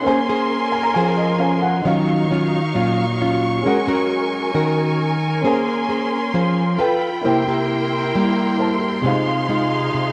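Intimate and smooth, this bossa nova fragment in Bb minor moves at 134 BPM in a straight 4/4, with an up-front, fingerpicked nylon-string guitar of fresh classical tone carrying the accompaniment, a dark, mellow baby grand piano with audible action noise accompanying throughout and adding a brief fill from 0.5 to 1.9 seconds, and a lush bowed string section holding sustained chords with expressive vibrato and portamento, set in light reverb and studio ambience as the harmony moves from Bbm9 through Ebm9, Ab9sus4 and G9 to C7 before settling on Fm7/C.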